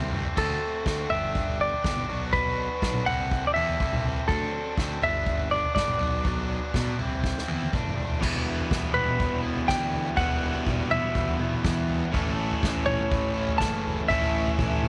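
Wistful yet carefree, this excerpt from a longer indie rock piece moves at 122 BPM in a straight 4/4, opening on a drum fill from an acoustic kit with a punchy kick and bundle sticks in a small room, while a bright overdriven guitar riff plays over a fuzzy picked bass that sits in the background. At 0.4 seconds a clean, compressed hollow-body guitar takes the melody up front, its tape echo trailing over chords that circle through D7, G and Bm. At 8.2 seconds the music shifts to Em as a cranked stack guitar joins with an up-front riff coloured by lush chorus and tape echo.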